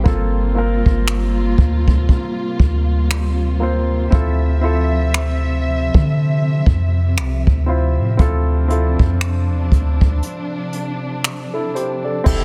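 A swung 59 BPM brush kit in 4/4, with roomy dark cymbals, finger snaps, hi-hat, a punchy kick and a softly clipped snare, enters at 0.1 s alongside a boomy, up-front 808-style bass, a deep-toned concert grand piano and a lush, woody bowed string section with vibrato and sidechain pumping, moving from Gm11 to Dm9 to Dm7 in D minor through a break at 10.2 s for a late-night, sensual contemporary R&B excerpt with a dense, heavily limited master.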